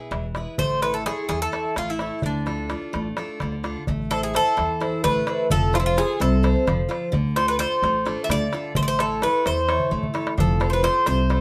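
Intense and driving, this short cut of Greek folk for a bouzouki band moves at 258 BPM in eighths over a straight 7/8, with a light reverb around the group. The metallic, double-strung bouzouki carries the melody up front with some octave-doubled strings, while a bright, full-bodied dreadnought guitar picks the accompaniment with audible finger squeak and a woody, thumpy upright bass on gut strings also sits up front, entering at 0.1 s. A crisp metal-shelled darbuka keeps the pulse through chords moving from E and A to Dm, Am and F, and it breaks into a drum fill at 9.8 s.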